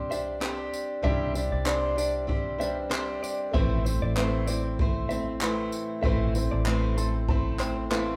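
This short excerpt has the feel of a band playing live together in one large studio room, with moderate reverb lending an airy, natural space. The style is easy-going, carefree acoustic pop at 96 BPM in 4/4, with a light swing on the sixteenths, moving from Csus2 to Am at 3.5 seconds. Up front, a fingerpicked acoustic archtop guitar with fresh strings carries the accompaniment in a warm voice, while a vintage electric bass, dark, round and foam-muted, holds the low end. A jazz kit played with brushes adds a boomy kick, handclaps and tambourine, and a clean, compressed electric guitar recorded direct sits in the background picking arpeggios. Further back, a bright, woody upright piano with long sustain fills in the harmony and plays a fill from 6.7 seconds.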